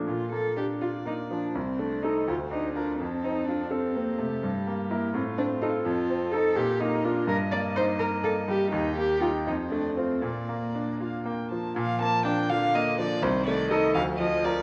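A quick, cheerful and spirited classical-period movement for piano trio in Bb major at 83 BPM in a rubato 6/8, in which a bright, up-front grand piano accompanies a rich, floating sul tasto violin melody and an intimate, warm cello second line with light vibrato, all heard through moderate stage reverb and the warbling pitch drift of worn cassette tape in this 14.6-second cut from a longer piece.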